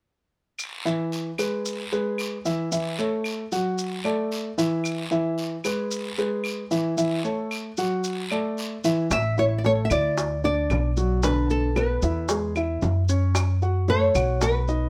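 A straight, relaxed groove in Cuban son and guajira style begins with woody claves in the background, raspy guiro and grainy, mellow maracas, soon joined by arpeggios on a dark, boxy baby grand piano with audible action noise and short sustain. At 9.1 seconds the guiro stops as a small, fingerpicked nylon-string guitar carries the melody with slapback echo, a thumpy, gut-strung upright bass played pizzicato sits up front, and round, low-tuned vintage bongos played with soft hands join in. The warm sound is dry and closely miked, with little reverb, in this passage cut from a longer piece.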